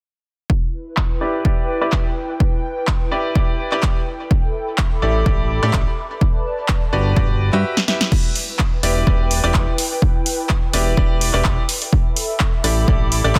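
A dense, heavily limited modern master with little reverb carries this energetic, bittersweet piano house passage, cut from a longer piece and set in 4/4 with a light swing on the sixteenths. An up-front, tape-warm electronic kick and an airy, breathy pad with chorus begin at 0.5 seconds; the pad's soft, mellow, slow-attack sustain pumps in sidechain, with a faint nasal edge and a noise layer. A punchy analog drum machine soon adds crash, handclaps, hi-hat and snare, its snare, hats and cymbals low-pass filtered and the snare, clap and hats set in a short room. A bright, slightly worn baby grand piano carries the riff through delay, a low-pass filter and sidechain pumping, with a filter sweep on the piano across the first section. At 5.0 seconds a fat, thick analog bass arrives, blending detuned sawtooth, square and triangle tones with ring modulation and its own filter sweep, sustained with a fast attack and also pumping. 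A drum fill leads into the second section at 8.1 seconds, where the Em7, A7sus4 and Gmaj7 harmony circles back through Em7 and A7sus4.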